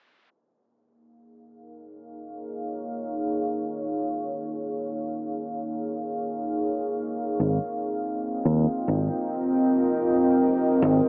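Floating in free time, this meditative, deep ambient passage, cut from a longer piece, opens with a moody, detuned sawtooth pad that fades in from 2.1 seconds. It holds sustained chords through a slow attack, long release, chorus and its own built-in reverb, moving from Bbm7 to Abmaj9 at 7.2 seconds. A round, punchy fingered electric bass joins up front at 7.4 seconds, while a huge reverb, a filter sweep and a low-pass, AM-radio tone lend the sound a distant, hazy cast.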